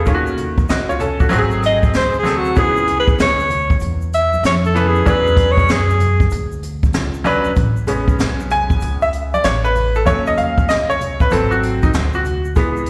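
Heard through a live venue's PA with a light recital-hall reverb, this short cut from a longer piece has a smooth, relaxed jazz-hop feel over a swung hip hop groove in 4/4. A breathy alto saxophone leads up front with a whispered subtone, soft attack and light vibrato, colored by slapback echo, and carries the melody until 6.3 seconds. A bright, worn upright piano, slightly detuned and full of audible action noise, accompanies with its own slapback echo before taking the solo from 7.6 seconds. Underneath, a woody, growly pizzicato upright bass anchors the low end, while a brushed jazz kit with a high-tuned snare, boomy kick and hi-hat sits close and natural. Tube shaker and congas, played with soft hands, stay in the background. The harmony moves through D#m7b5, G#7b9, C#m7 and E13, then lands on Amaj9 before the cycle returns.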